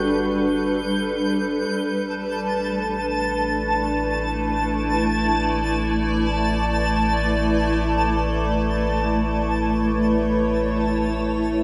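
Ambient music in free time with a warm, serene mood, this brief passage from a longer piece is built on an up-front granular cloud pad whose blurred, evolving chords move from A9sus4 to Asus24, with a round, deep sine sub bass beneath and a twinkling, sparkling granular texture shimmering an octave up above. An airy, close-miked alto flute with unsteady vibrato sounds only F#4, entering softly in the background through analog delay and dropping out by 0.8 s. The whole dreamy mix is soaked in a lush hall reverb and carries the hazy character of cassette tape.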